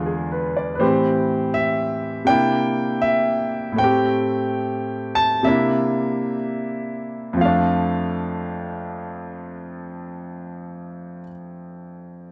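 A clear, natural grand piano sits up front in this brief solo jazz excerpt in F major, moving from E7b9 through Am7 and C9 before settling on F6 at 7.4 seconds. The feel is swinging and sophisticated yet rubato, with a tempo drifting between 56 and 82 BPM and a slowing down from 0.8 to 7.4 seconds. A wet studio reverb and the worn, warbling pitch drift of old cassette tape give the whole recording a worn texture.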